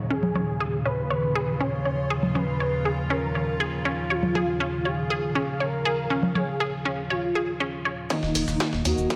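Melodic techno at 120 BPM, melancholic and dramatic, where a bright, morphing wavetable pad pumping with the sidechain and a very quiet swarming drone sit under a smooth portamento lead with vibrato and tape echo, a punchy, warbling unison pluck arpeggio given a filter sweep, and electronic congas, shaker and hi-hat, until at 8.1 seconds the music builds on an Ebm7 as bold analog synth brass stabs, a gritty breakbeat sampler-style kit, an overdriven electronic kick and, from 8.2 seconds, a deep, rumbling detuned saw bass join, all within a lush hall reverb.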